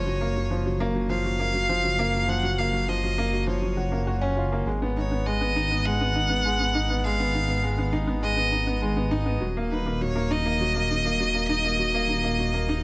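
A small room ambience with light reverb surrounds this melancholic, moving piece of piano and strings electronica, cut from a longer work. At 101 BPM in a straight 4/4, set in G# dorian and tuned to A4 = 439 Hz, it runs for 12.8 seconds as one section over the chords F#maj7, G#m and D#m. An upright piano plays the riff between E#3 and F#4, its woody, boxy tone close up front, with short sustain, audible action noise and delay giving it an intimate feel. Above it, a single player on violin carries the melody from B4 to F#5, bowed with a clear, smooth, even tone, light vibrato and delay. Beneath them, a dark detuned saw bass holds the low end from D#1 to G#1, deep and rumbling, with beating, a fast attack and a saturated, sustained tone.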